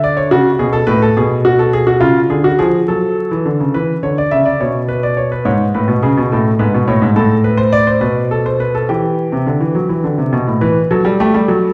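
Lively yet stately, this short cut from a longer classical piece is a baroque-style two-part invention for solo grand piano in 6/8, moving at 70 dotted-quarter beats per minute with a straight feel and settling into E minor from 7.2 seconds. The warm concert grand sounds intimate and natural, with deep bass, audible action noise and a range from G#2 to E5. It sits in a wet recital hall with a 1.6-second reverb tail, heard from further back in the room under a layer of vinyl crackle, and its opening idea returns at 10.6 seconds before the clip ends.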